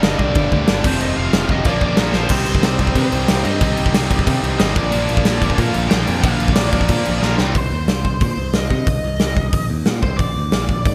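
Urgent and aggressive, this punk rock excerpt in C minor charges along at 183 BPM in a straight 4/4, with a dark, biting lead guitar carrying the melody through overdrive and delay, while three picked rhythm guitars grind out riffs: an overdriven one and a tight distorted one in the background, and a very quiet, compressed, double-tracked one that drops in and out. The riffs fall away at 7.5 seconds, leaving the lead over a growly, direct electric bass and an up-front big rock kit with a punchy kick and bright cymbals, whose fills at 2.1 and 7.2 seconds push the changes, all set in light reverb and small-room ambience.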